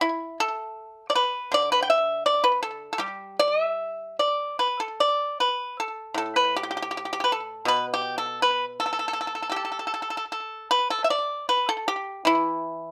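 Close, detailed microphones and a light reverb give this short recording of Chinese traditional music an intimate, clear sound, with the pipa set up front. The solo pipa plays alone for the full 12.9 seconds, plucked with fingerpicks in a dry, percussive voice that carries a slapback echo. Its lines span from A2 up to G5 in the A shang mode, moving in a flexible rubato that hovers between 73 and 84 BPM over a 2/4 metre. The mood is serene and elegant, and at 10.7 seconds the music moves into a new section before this excerpt, taken from a longer piece, breaks off.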